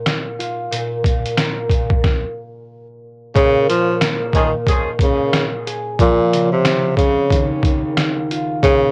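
A home cassette recording with light reverb frames this moody, gritty boom-bap hip-hop excerpt, where a mellow, fingerpicked concert harp rings out over a thumpy, overdriven sampler-style drum kit, and after a stop at 2.0 seconds a breathy, clear tenor saxophone with scooped notes takes a close-miked jazz solo from 3.4 seconds over Bbm7, Dbmaj7 and Ebsus2 chords, joined briefly at 4.3 seconds by a dark, vintage saxophone section stab with light vibrato.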